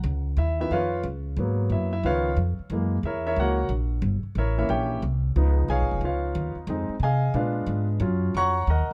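Big band swing in D-flat mixolydian, this short energetic, brassy excerpt moves at a brisk 180 BPM in 4/4 with a swung eighth-note feel. An upright bass opens at the very start, its pizzicato steel strings giving a woody, warm, up-front tone in the low register. A clear concert grand piano joins at 0.4 seconds and takes the solo, ranging from E-flat 3 up to D-flat 6 with a deep bass and a natural, long-sustaining sound. The harmony runs through dominant and minor seventh chords, passing through a diminished chord at 4.0 seconds before a turnaround toward the end. The close, detailed miking and dry room keep both instruments present and intimate.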